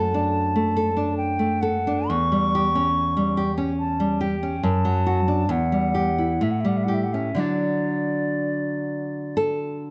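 Close, detailed microphones and light reverb frame this lyrical, tender romantic duo in D major, moving in a rubato 3/4 between 52 and 74 BPM. A concert flute sings the melody with a pure, straight tone and crisp attack, while an up-front, bright nylon-string classical guitar accompanies fingerpicked, with an audible finger squeak. The passage, cut from a longer piece, moves from D/F# through C#dim/E, back to D/F#, then through Em and A7 to settle on D; the flute falls silent at 9.4 s and the guitar rings on to 9.9 s.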